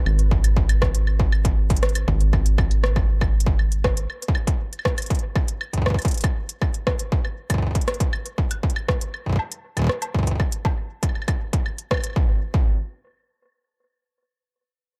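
A dry, close-sounding cut from a longer IDM piece at 119 BPM in 4/4, glitchy and intricate, opens with a hollow, bouncy square-wave bass with a resonant filter pluck and tube saturation that drops out at 4.1 s, while an organic electronic kit of crisp hi-hats, rim clicks and woodblock, treated with analog delay and heard in a small room, plays until 12.2 s beneath a distorted, tape-warm electronic kick that sits up front in a large room and carries on to 12.7 s.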